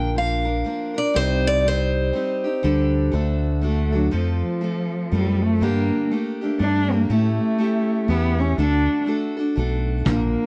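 A swung 3/4 waltz at 121 BPM sets a wistful, intimate mood in this short acoustic folk passage, cut from a longer piece. Two picked steel-string acoustic guitars sit up front, bright with fresh strings and audible finger squeak: one carries a brief melody until 3.6 s while the other picks out the accompaniment through chords of Bb, Cm and D. A dark, round fingered electric bass anchors the low end. At 3.6 s a single bowed cello enters, rich and nasal with a boxy, focused vibrato, and at 4.1 s it moves into a solo over F, Gmadd9, A7 and D. At 10.1 s a vintage brush kit adds a quick hi-hat and a punchy kick, muffled and lo-fi with a rolled-off top. The whole passage carries light reverb and the worn, warbly pitch drift of old cassette tape.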